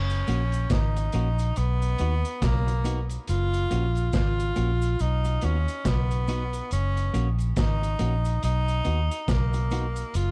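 A bright, close-miked tenor saxophone sings a vibrato-laced solo melody with dub echo over a round, foam-muted vintage bass that sits up front, opening this sunny roots reggae excerpt at a relaxed 70 BPM with a swung 16th-note feel. A crunchy breakbeat kit with a tight kick, medium-tuned snare, hi-hat and a gritty, saturated, rolled-off top joins almost at once, while a cabasa sits in the background and a clean, compressed semi-hollow guitar enters at 0.3 seconds, its picked accompaniment echoing behind the horn. The dark, dry production keeps the music swaying between F# and B throughout.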